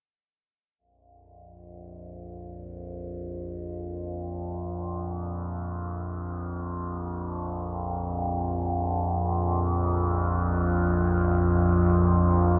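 Fading in from 0.8 seconds, a bright, resonant synth drone of sawtooth and sine tones sits up front and sustains low with moving, evolving overtones, chorus and its own reverb, while a cavernous cathedral-like space surrounds it in this unsettling, desolate free-time ambient fragment cut from a longer piece.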